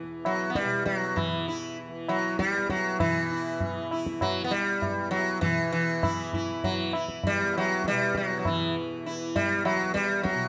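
An up-front, round sitar with shimmering sympathetic strings carries the melody from 0.3 seconds, its plectrum-plucked notes touched by a slapback echo, over a bright, buzzing tanpura drone that opens the passage and a low-tuned, ringing tabla played close and dry, in this introspective, meditative Hindustani classical passage at 99 BPM in a straight 4/4, cut from a longer piece, which shifts into a new section at 3.0 seconds and is captured with detailed close microphones in a moderate recital hall reverb.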